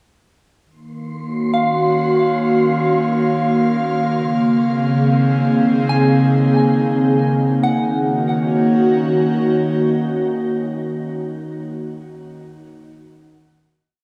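A slow, straight 69 BPM pulse in 4/4 carries this reflective, melancholic ambient piece in Eb dorian, where a breathy, detuned pad holds up-front chords moving from Ebm7 to Bbm7/Db, a wind-like tuned noise texture sustains a high C6 until 7.7 s, a pure FM bell scatters soft arpeggios through chorus, phaser and diffuse delay, and a calm organ-like drone enters at 5.4 s and carries on through the final Ebm7 chord, all within a dreamy mix soaked in plate and shimmer reverb.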